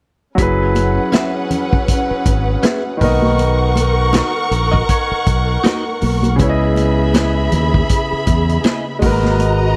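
Smooth and silky, this lush 1970s-style soul excerpt moves at 80 BPM in 4/4 with a swung sixteenth-note feel, drifting through F#9sus4, Bmaj7, C#m9 and G#m9 chords. A clear concert grand piano opens the passage at 0.3 seconds, its intimate, polished tone carrying audible action noise and long sustain, and is joined almost at once by a string section whose bowed ensemble playing is expressive, with vibrato and portamento. Anchoring the low end, a bright, growly fingered electric bass sits up front beside a vintage acoustic drum kit with a punchy kick, a medium-tuned snare, hi-hat and a rolled-off top. In the background, high-tuned congas with a thin skin are played with soft hands, while a mellow glockenspiel struck with soft plastic mallets adds bell-like sparkle before falling silent at 6.2 seconds. From 1.1 seconds a twangy, compressed clean electric guitar, recorded direct and treated with phaser, picks out a riff. 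The whole has a dry, close studio sound with small room ambience.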